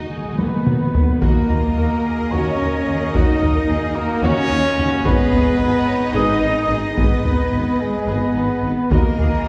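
Compressed, saturated taiko drums struck with hard sticks drive this relentless, dark excerpt of an epic orchestral film score, set in Eb minor at 218 BPM in eighths in a straight 7/8. A present French horn section holds sustained chords, while a solo trumpet in classical style adds stabs and a hollow silver concert flute, pure and tongued, carries a second line high in the background. Two bowed violin sections share the upper strings: a lush, distant one with the melody and a warm one on a second line. A close chamber viola section plays accompaniment, and a very quiet cello section, a double bass section and a mellow, very quiet tuba form the bass. Articulate, very quiet timpani with calf heads open the piece with a fill alongside a drum fill, return at 8.9 seconds, and a soft-attack woodwind section enters at 1.2 seconds with tight sustained chords. The harmony moves from Ebm to Abm at 5.1 seconds and back. 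The whole ensemble sits back in a wet concert hall with a two-second reverb tail.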